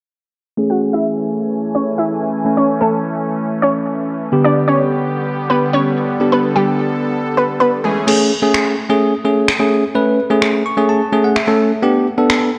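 A bell-like, bright tine electric piano accompanies this upbeat, carefree dance-pop excerpt alongside a smooth, detuned supersaw holding chords, while a round, detuned analog pluck carries the melody with chorus and delay under a filter sweep, until a punchy analog drum machine with crash cymbal and finger snaps arrives at 8.1 seconds and the piano plays a fill at 10.4 seconds, all set in a lush hall reverb with worn, warbling cassette-tape pitch drift.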